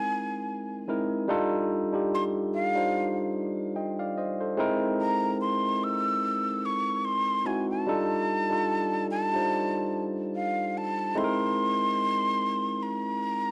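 Worn, warbling cassette tape with drifting pitch wraps this soulful, late-night R&B fragment in a moderate studio room. A breathy metal jazz flute carries the melody up front with vibrato, a soft attack and lifted highs. Beside it, a barky, clean tine electric piano, played through a combo amp and bathed in plate reverb, accompanies across the full 13.5 seconds over a lightly swung groove that alternates altered C7 and F13 chords.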